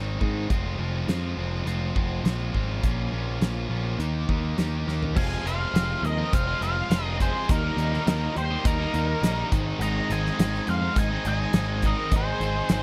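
A straight 4/4 classic rock groove, gritty and swaggering, is driven by a huge arena drum kit with a fat snare and punchy kick, a growling, up-front overdriven bass and a bright, distorted guitar riff, until a drum fill at 4.9 seconds brings in two dark octave-fuzz lead guitars at 5.2 seconds, the upper one coloured by wah and slapback echo, over an overdriven semi-hollow guitar riffing in the background, all in a dry, close 1970s-style sound.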